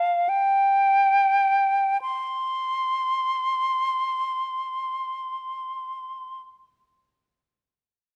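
The recording has a dark, warm production, with moderate recital hall reverb lending the single line a gentle sense of space. It is a classical, expressive piece for unaccompanied flute in free time, cut from a longer work, and its mood is nostalgic and serene. A silver concert flute carries the solo from the opening until 6.4 seconds, sitting up front with an airy, metallic tone, soft attacks and vibrato. Its line stays in the upper register, between F5 and C6. The opening phrase slows down over its first 2.0 seconds, and the piece then moves into a new section that runs to about 7.7 seconds.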